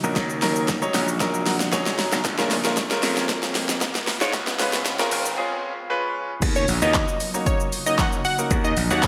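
Punchy, overdriven deep house drums sit up front in this driving, energetic dance-pop excerpt at 115 BPM in Eb minor, joined by a growly, gritty slap bass with sidechain pumping and a clear, polished baby grand piano with slapback echo that adds a short fill during the build-up. A glassy, warbling FM pad holds very quiet sustained chords beneath, while a faint riser runs through the build-up and drum fill until 5.4 seconds, giving way to a brief break. At the drop at 6.4 seconds, a catchy, detuned sawtooth unison lead with digital delay and sidechain pumping enters at 6.6 seconds, all set in a lush hall reverb with a big arena sound.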